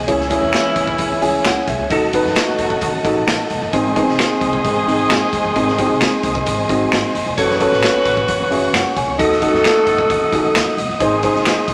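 This excerpt of uptempo 1960s-style soul opens with a percussive tonewheel organ holding sustained chords through a fast rotary speaker, its flute-like tone marked by key click, alongside a thumpy pizzicato upright bass on gut strings. A mellow horn section quickly adds a second line with light vibrato and octave doubling. A dark, boxy upright piano accompanies with audible action noise and long sustain, while a raw garage drum kit drives the straight 4/4 pulse at 132 BPM. The kit's punchy kick, medium-tuned snare and hi-hat sound saturated and gritty in a pumping stone room. Finger snaps join at 0.5 seconds, close and human yet sitting in the background. The piano steps forward with short fills at 1.0 and 8.3 seconds as the harmony moves from C#m through D#dim to G# and F#m before passing through D#dim again and returning to G#, all within a moderate studio ambience that keeps the mood passionate and driving.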